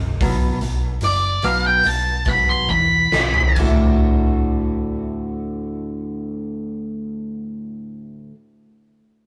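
In a straight 4/4 that slows through its opening seconds, this quiet-loud alternative rock fragment from a longer piece feels anthemic and bittersweet. A woody, boxy old acoustic guitar picks arpeggios through tape echo over a round, dark hollow-body bass, while a huge arena kit with a fat snare, punchy kick and bright cymbals drives beneath a dark octave-fuzz lead guitar solo. The drums launch a fill at 2.7 seconds and stop at 3.8 seconds as the music moves to a new section at 3.6 seconds, all caught in a rough rehearsal-room recording with light reverb.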